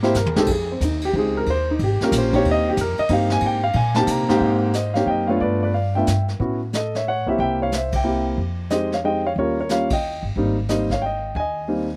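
An intimate grand piano with audible action noise carries the melody up front in this relaxed, playful jazz waltz, swinging at 182 BPM in 3/4 in A-flat major. A woody, growly pizzicato upright bass and a vintage brush kit with dark cymbals and a punchy kick support it throughout, with the drums set furthest back. Over a dry, close sound and changes that cycle through Fm7, Eb7 and Abmaj9, the band hits accents together at 7.9 and 9.9 seconds in this cut from a longer piece.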